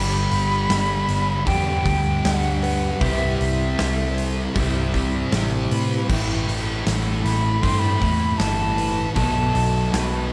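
Light reverb and a small-room ambience frame this blissful, wistful shoegaze and dream pop rock excerpt at 78 BPM in G major, where a pure, softly attacked silver concert flute with vibrato and analog delay carries the melody over a dark, up-front fuzz guitar riff soaked in distortion and lush chorus, a bright, double-tracked overdriven semi-hollow guitar riff, shimmering octave-doubled arpeggios with finger squeak from a fingerpicked twelve-string acoustic guitar in the background, a round, foam-muted vintage electric bass, and a natural big-room rock drum kit with a punchy kick that enters at 0.3 s, all above a G, Cmaj7, Am9 and B7 progression.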